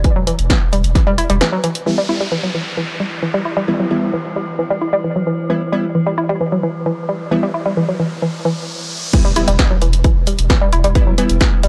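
Driving, hypnotic peak-time techno at 132 BPM in E minor, built on an up-front, woody wave-folded pluck riff with chorus, analog delay and sidechain pumping, over a thick, saturated sub bass, a heavy layered electronic kick and a punchy analog drum machine whose tape-toned snare, hi-hats and crash cymbal carry an industrial edge. From 1.9 seconds, crisp detuned wavetable chord stabs settle on E minor, and from 2.9 seconds a metallic, inharmonic FM drone hovers eerily in its own reverb. A riser from 5.7 seconds builds toward the drop at 9.1 seconds, where the kick, bass and drum machine return alongside an impact, with a downlifter also among the sound effects. The dry, gritty hardware sound with transformer saturation gives this cut from a longer piece a raw, relentless character.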